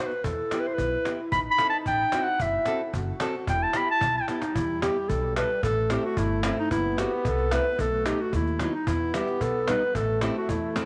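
A mellow, up-front clarinet carries a soulful, festive klezmer melody in straight 2/4, playing solo until 4.6 seconds over fingerpicked nylon-string guitar, woody pizzicato upright bass and a snappy, vintage-toned cajon played with soft hands that adds a fill from 4.0 seconds, while a veiled trombone with bucket mute sings a vibrato-laden second line through chords moving from Em to Am, F#dim and B, all set in a moderate echo-chamber reverb in this short cut from a longer piece.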